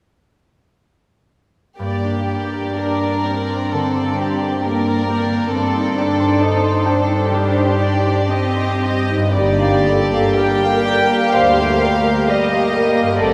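Classical, a slow, melancholic and elegiac romantic movement for symphony orchestra in G minor at 63 BPM, moving with a rubato, uneven pulse from G minor to C minor over G and back, and cut from a longer piece. From 1.8 seconds the violins carry a floating, pure melody with a soft attack played sul tasto, while a second violin line with light vibrato sits up front beside intimate violas, a distant cello bass and a bright, ringing fingerpicked harp whose arpeggios hover in the background. At 9.3 seconds a vintage-toned French horn section adds sustained chords, and at 9.4 seconds a dark, woody double bass section joins beneath, all bathed in a wet cathedral reverb.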